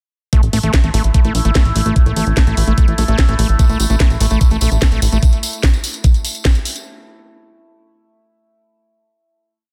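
A four-on-the-floor knocking kick drives this intense psychedelic trance piece at 147 BPM, with a cracking snare on the backbeat and bright programmed hats, a funky, rolling sixteenth-note analog bass up front, a squelchy, distorted acid line looping in three steps against the bar with delay and sidechain pumping, a nasal, chorused drone of moving overtones holding sustained chords from 1.0 seconds, and a jingly tambourine playing hand-played sixteenths from 3.6 seconds, all within a dense, heavily limited modern master.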